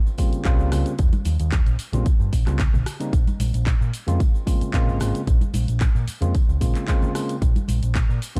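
A punchy, tape-warm electronic kick sits up front in this feel-good, groovy nu-disco excerpt at 112 BPM, alongside a round, amped picked electric bass, a gritty overdriven tine electric piano with digital delay moving from Eb13 to Bbm7 at 3.1 seconds, a layered house kit of handclaps, hi-hat, rim click and shaker re-recorded in a small room, and close, dry tambourine and congas in the background, all within a dark production wrapped in digital ambience.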